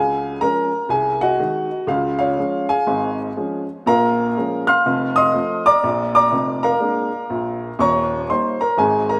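A rough home-demo sound wraps a single upright piano in lush hall reverb, while the instrument itself sits up front with a woody, boxy, intimate tone, long sustain and audible action noise. This playful, exuberant stride jazz moves at 122 BPM in 4/4 with a swung eighth-note feel. The piano spans Eb1 to F6 alone across the 9.2-second fragment cut from a longer piece, moving from C# through G#7/B#, Bbm7, F7 and Bb7 to Eb7.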